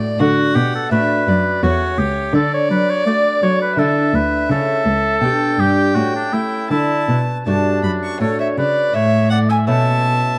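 A dark production sits in a moderate stone room whose reverb lingers for about 1.3 seconds, framing a serene, flowing baroque-style sonata movement in D major at 83 BPM in 3/4. After 0.2 seconds a clear oboe with light vibrato takes the up-front solo melody, while a single bowed violin plays a smooth, even second line with vibrato, close by. Beneath them a bright, delicate fingerpicked lute with double nylon strings, some of them octave-doubled, provides the continuo accompaniment, and an up-front bowed cello carries the bass with warm, expressive vibrato and portamento through this fragment of a longer piece.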